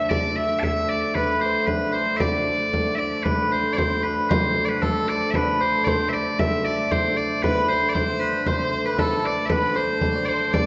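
Piercing bagpipes carry the melody up front from the start of this mysterious, ancient-sounding medieval dance in 2/4 at 115 BPM, over a shimmering, ringing hammered dulcimer, a dark, nasal, reedy hurdy-gurdy drone and a distant, earthy bowed fiddle with light vibrato, while a deep frame drum joins at 0.1 seconds; the fiddle drops out at 3.0 seconds and returns at 7.4 seconds, all set in the reverberant wash of a recital hall with a soft, rolled-off top end.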